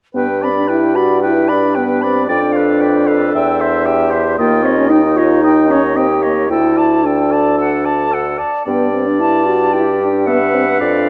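A pure, metallic concert flute carries the melody of this cheerful, graceful classical-period movement for wind quintet, its tongued line sounding slightly distant and shaded with vibrato. The passage, cut from a longer piece, moves at a quick 113 BPM in straight 4/4 in G major. A close-miked oboe with a warm tone and light vibrato sings a second line, while a mellow French horn, set back in a roomy space, supplies accompaniment. The bassoon sits up front with the bass line, and a clear clarinet with a soft attack joins the accompaniment in the background at 1.2 seconds. The harmony travels from G through G7/F, C/E and Eb7 to a Dsus4 that settles on D before returning home to G, all within a moderate concert hall reverb.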